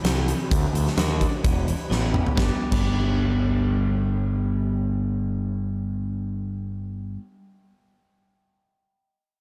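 Huge arena drums with a fat snare, punchy kick and bright cymbals pound up front in this cathartic, bittersweet quiet-loud alternative rock excerpt, falling away at 2.9 seconds after a fill, while a growling, overdriven picked bass and a clean, twangy twelve-string electric guitar playing arpeggios carry on through 7.2 seconds in light studio reverb.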